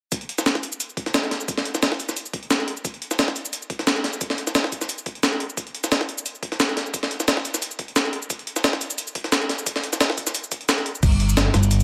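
Lightly reverberant and up front, this lush, rolling liquid drum and bass excerpt at 176 BPM builds for its first 11.0 seconds on a compressed, gritty breakbeat kit with a high-tuned snare, hi-hat, shaker and crash, re-recorded in a small room, along with a thumpy electronic kick, until a woody, growly pizzicato upright bass enters at 11.0 seconds.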